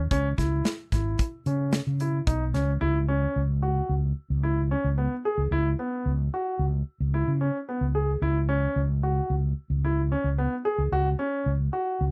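A dark, rounded fretless electric bass opens this driving, intricate fragment of progressive band music in 5/4, joined at once by natural-sounding grand piano arpeggios and an acoustic drum kit with a tight kick, a medium-tuned snare and hi-hat. The drums drop out at 2.7 seconds, leaving the up-front bass and piano to carry the intricate figures over a suspended chord that arrives at 10.9 seconds. The sound is dry and close in a 1970s studio manner, with some lossy compression artefacts.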